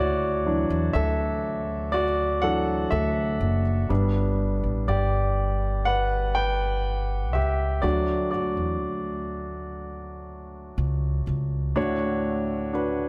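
Emotional and hopeful, this pop ballad in D major moves at a slow 61 BPM in a straight 4/4, tuned slightly low to A4 = 437 Hz and taken from a longer piece. A concert grand piano carries the accompaniment and takes the solo spotlight through the opening 11.8 seconds, its intimate, polished tone showing deep bass, long sustain and audible action noise, set up front and present. An acoustic upright bass plays pizzicato on steel strings beneath it, woody and warm and also up front, until 11.7 seconds. The harmony moves from Dadd9 to G, back to D, and settles on Dmaj7 as a new section begins at 11.8 seconds. Light reverb gives the close performance a soft sense of space.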